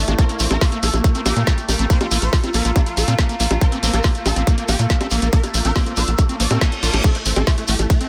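A straight 4/4 pulse at 140 BPM drives this intense, hypnotic psychedelic trance excerpt, where an up-front tight kick and a punchy, dark sequencer bass anchor a layered kit of woody snare, metallic hats, ride, crash and bongos, a grainy, very quiet shekere adds acoustic texture, and a bright, swarming rave lead with chorus, phaser, tape echo and sidechain pumping carries the melody over a squelchy, screaming distorted acid riff, a very quiet metallic wobble bass, an overtone-sweeping ring-modulated drone and a lo-fi, nostalgic warbling pad, with a reverse cymbal sounding in the background from 6.5 to 7.0 seconds in an otherwise dry mix.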